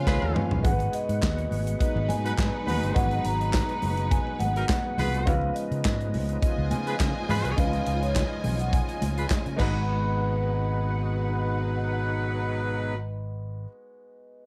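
Light reverb and small-room ambience give this short disco cut, taken from a longer piece, a close, intimate sound. At 104 BPM in a straight 4/4 and G# dorian, it opens with a drum fill before the up-front acoustic kit drives the groove with punchy kick, medium-tuned snare, hi-hat, handclaps, toms and crash, while an amped fingered electric bass sits equally forward beneath it. A mellow vibraphone played with soft mallets carries the melody over a lush, bowed string section on the second line, tight pop-style horn stabs, and a gritty overdriven tonewheel organ holding chords through chorus vibrato and a slow rotary speaker. A warm concert grand piano is tucked in the background, very quiet high-tuned congas and a hollow group handclap add texture, and the harmony moves between C#9 and G#m7. The drums stop at 9.7 seconds, just before a new section begins at 9.9 seconds, leaving the other parts to carry the driving, danceable mood to the close.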